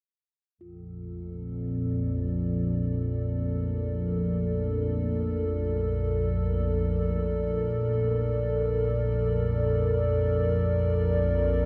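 In free time, this dark ambient drone in Bb major opens with a very quiet, pure quartz singing bowl ringing on F4 from 0.6 s, struck with a felt mallet and slowly beating. At 0.8 s a low analog drone enters up front, spanning Bb1 to F2 with an evolving, wave-folded blend of sawtooth, pulse and sine tones under slow attacks, long releases and chorus. From 1.3 s a moody, detuned analog pad holds sustained chords between A4 and D5, built from square, sawtooth and triangle waves with a sub octave and chorus, all bathed in a huge, cavernous reverb in this fragment cut from a longer piece.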